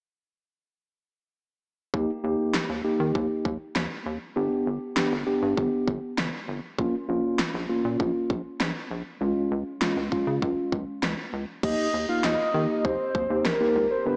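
Bright and upbeat, this synth-pop excerpt moves at 99 BPM in a straight 4/4, centred on Eb mixolydian with a chord path running Eb, G, Bbm and Db before returning to Eb. From 1.9 seconds a mellow, clean tine electric piano sits up front as accompaniment, joined by a rubbery, hollow square-wave bass with a bouncy filter pluck and a pop drum kit built around a punchy kick, fat snare and crash cymbal. The drums sound electronic and layered, having been re-recorded in a small room. At 11.6 seconds a soft, round synth lead enters with the melody, layered with a sub octave and colored by chorus, phaser and vibrato, giving it a full yet dark tone. The whole mix is dreamy and soaked in a lush digital hall reverb, while keeping a small-speaker quality.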